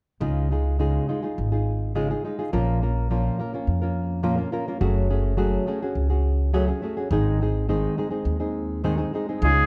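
A thumb-plucked nylon-string guitar, with the odd finger squeak, opens this romantic, festive mariachi fragment at 0.2 s alongside a woody, thumpy pizzicato upright bass, both up front and moving through Dbadd9, Bbm, Gbmadd9 and Ab. At 9.4 s a distant, roomy trumpet with light vibrato arrives in classical style for a brief solo note as the clip closes. A recital hall reverb and a dark, warm production color the sound.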